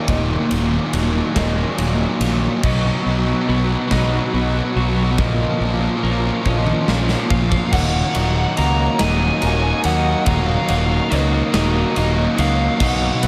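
This cinematic, cathartic post-rock excerpt opens on a dense bed of guitars in Eb minor, moving in a slow 6/8 at 47 BPM: a bright, clean twelve-string electric picks echoing arpeggios low in the mix, a twangy, lo-fi guitar through a small old amp adds chorused, tape-echoed arpeggios up high, and a fuzzy, distorted guitar plays a riff alongside a compressed, overdriven partner. Underneath, a very quiet chamber string section holds bowed chords with a reedy, gut-string, period-style tone. Just after the start, an up-front fingered bass with a fuzzy, overdriven growl and a big-room rock kit with a punchy kick and medium-tuned snare join, driving a build-up through Ebmadd9, B and Bbm that crests with a drum fill from 6.5 seconds. At 7.3 seconds a dark, smooth lead guitar enters with an overdriven, tape-echoed melody in a high register, shortly before the harmony returns to Ebmadd9. A huge ambient reverb soaks the whole mix in a dreamy haze.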